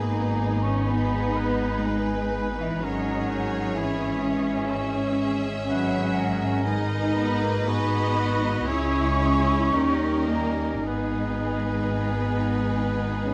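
A rubato 4/4 pulse drifts between 50 and 64 BPM in this elegiac, yearning excerpt of a slow romantic orchestral movement in G# minor, moving from G#m through C#m and D# back to G#m. A clear, intense violin section carries the melody from a distance, framed by second lines from a pure, mellow small flute group, a bright solo clarinet, a focused background violin section and a roomy oboe with light vibrato. Soft-attack violas, tight background French horns holding sustained chords, smooth, even cellos and expressive double basses sitting up front give the bowed strings a lush depth under light reverb and close, detailed miking.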